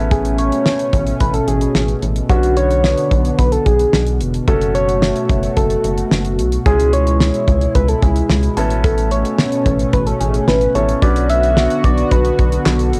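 At 110 BPM in a straight 4/4, a damped 70s drum kit sits up front with a dry, fat snare, tight kick, hi-hat and handclaps, driving this cool synth-pop excerpt in B dorian, while a rubbery square bass bounces underneath with a hollow, saturated, resonant filter pluck. A chorused pulse-width pad holds shimmering, evolving chords through Aadd9, Bmadd9, F#m and C#m, and a clear, polished baby grand piano adds accompaniment. On top, a soft struck FM lead carries the melody with a round, keys-like tone, vibrato and tape echo, all captured as a home cassette recording in a booth with moderate ambience.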